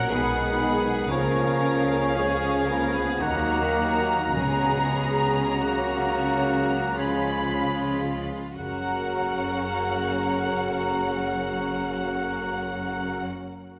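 A warm, lyrical slow romantic movement for symphony orchestra, this excerpt from a longer piece moves in a rubato 3/4 at roughly 36-62 BPM in F# major, slowing down through its opening 8.6 seconds before settling on the home chord. A lush violin section carries the melody with focused vibrato, while a second violin line, a clear solo oboe and an airy, hollow flute section weave supporting lines. Beneath them, a violas' expressive portamento and a dark, punchy solo bassoon fill the accompaniment, and a distant, roomy French horn section holds sustained chords. Rich cellos and distant double basses anchor the bass, a dark trumpet section adds smooth-topped stabs, and very quiet timpani played with soft mallets join at 4.4 seconds with a round tone. The harmony passes from B through C# and D#m to F#/C# and C#7 before resolving to F#, all bathed in a wet concert hall reverb.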